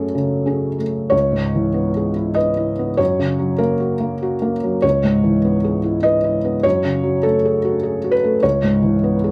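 A felt-muted upright piano opens the recording alone, its tone soft and mellow, with audible action noise that places the listener close to the instrument. This short fragment of a longer neoclassical minimalist piece sits in C# minor at 98 BPM in 3/4, played with a rubato feel that gives it a reflective, wistful mood. The harmony moves from an F#madd9 opening into a passage beginning at 1.1 s that alternates between C#m7 and F# chords, returning to F#madd9 before settling on C#m7 at 8.4 s. The piano ranges from C#2 to D#5, and its smooth, vintage character feels intimate and up front. A moderate small-room reverb adds a gentle sense of space around the instrument through to 9.3 s.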